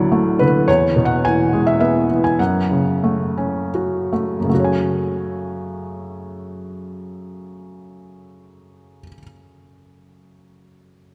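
In a 3/4 with free rubato, the tempo drifts between 76 and 108 BPM, and the pace slows from 0.7 to 4.5 seconds before the music opens into a second section. This is a short, lyrical classical fragment for solo felt-muted upright piano in F# minor, cut from a longer piece, with a bittersweet, cool mood. The piano sounds soft, mellow and intimate, its thin felt giving a muted tone, with audible action noise that keeps it close and up front. The part spans D2 to G#5, and the harmony moves from D to E, settling on F# minor at 2.4 seconds and colouring into F#madd9 at 4.5 seconds. A wet concert hall reverb with a 2.5-second decay lets the notes bloom into a spacious room around the near, hushed instrument.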